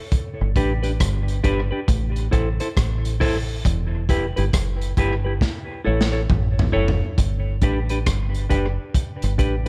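A crunchy breakbeat kit opens this sunny roots reggae excerpt with a gritty, saturated sound, its tight kick, medium-tuned snare, rim clicks, hi-hat and toms sitting up front with a rolled-off top. A deep, dark dub bass, fingered and foam-muted with a round, punchy tone, joins just after alongside it, and a clean semi-hollow guitar sits lower in the mix, washed in spring reverb and tape echo. The chords move through G, Am, Em and A, and a drum fill from 5.4 to 7.2 seconds leads into a new section back on G.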